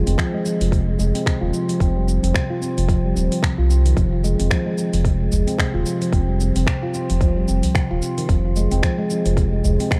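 A round analog bass, deep and ring-modulated with a sawtooth and sine edge, pumps up front with sidechain compression while a ringing handpan of nitrided steel plays meditative arpeggios through a low-pass filter and tape echo in this earthy, hypnotic organic downtempo piece in F minor at 111 BPM, swung on the sixteenths and cut from a longer work. A tight electronic kick and a tape-saturated afro-pop kit of cabasa, finger snaps and metallic hi-hats sit in small room reverb, and a very quiet, close, dry udu joins at 5.3 seconds. The production is dark, with light reverb and digital ambience.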